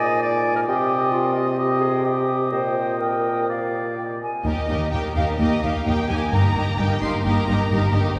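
Bathed in a wet cathedral reverb, this stormy, urgent excerpt from a quick classical-period symphony movement in Eb major at 128 BPM moves with uneven, rubato beats, opening with a bright solo clarinet, an airy, distant flute, an oboe with light vibrato and an up-front warm bassoon before the strings take over around 4.5 seconds and carry on to 8.2 seconds, with a rich, expressive violin section singing the melody above a focused second violin line, lush violas, cellos in the background and smooth, even double basses.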